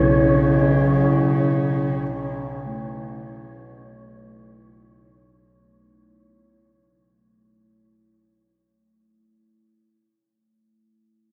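Desolate and dark, this dark ambient drone drifts in free time as a short fragment cut from a longer piece, fading out over its first 5.5 seconds in a wet cathedral reverb. An up-front, woody bowed cello with vibrato, played sul tasto, carries the melody around C#3 until 4.4 s, while a metallic bronze singing bowl struck with a suede mallet rings out meditative arpeggios between A3 and E4 with slow beating, both trailed by diffuse ambient delay. Beneath them, a resonant chorused drone on B1 sweeps through moving overtones, while high above, a breathy, wind-like tuned noise texture hovers around C#5, all over an A/B harmony.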